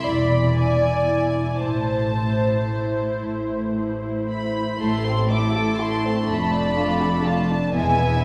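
Melancholic and elegiac, this short excerpt from a slow romantic movement for string orchestra drifts in a rubato 6/8 at about 37-44 BPM in A minor, moving from E7 to Am and on through Dm/F back to E. A floating, pure violin melody sits high above a second violin line, while dark, intimate violas and cellos and a warm double bass section (its attack soft) fill in the harmony and bass, all bowed sul tasto. The ensemble is heard from further back in a scoring stage whose reverb, with a 1.5-second decay, lends a wet wash, and the cellos and basses enter at 0.1 seconds.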